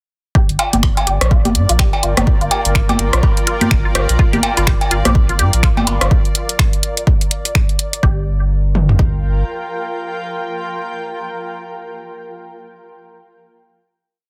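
Hypnotic and cool, this short minimal techno piece in G minor runs at 125 BPM in 4/4 with a 59% swing on the sixteenths, sitting on a single Gm7 chord through a drop from 0.4 to 8.0 seconds before a final chord rings out to the end. A punchy analog drum machine, tape-warm and re-recorded in a small room, drives a four-on-the-floor kick with mid and floor toms up front, while an overdriven garage kit adds programmed closed hats and finger snaps on the backbeat. An electronic cowbell, high conga and rim click, re-recorded in a large room, scatter clicks and blips in cross rhythm. Underneath, a thick, saturated triangle sub bass rolls in a staccato groove between G1 and G2, and a juicy, squelchy pluck with ring modulation, phaser and digital delay repeats a 3-step sequence that drifts against the bar, both pumping with the sidechain. In the background a bright, bubbling stepped-filter texture holds a high D5 with chorus and reverb, and a blurred granular cloud pad with slowly shifting chords lingers alone after the other parts stop, lasting until 11.8 seconds. 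The dense, heavily limited master carries light reverb overall.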